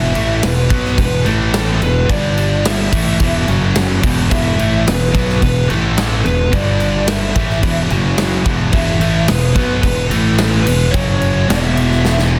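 Quiet-loud alternative rock in E minor at 108 BPM, this angsty, brooding excerpt is cut from a longer piece, with a dark, overdriven lead guitar through a small cranked amp carrying the melody between A4 and E5 over power chords that circle E5, A5, G5 and F#5. Beneath it, a bright, high-gain distorted guitar and a thick, dark fuzz guitar set back in the background grind out the riff, joined at 4.3 seconds by a very quiet, double-tracked fuzz guitar, while a growly fuzz fingered bass anchors the low end. A big acoustic rock kit sits up front with bright cymbals, a punchy kick and a medium-tuned snare in a natural room sound, closing on a drum fill at 12.1 seconds, all under light reverb and a dense, heavily limited master.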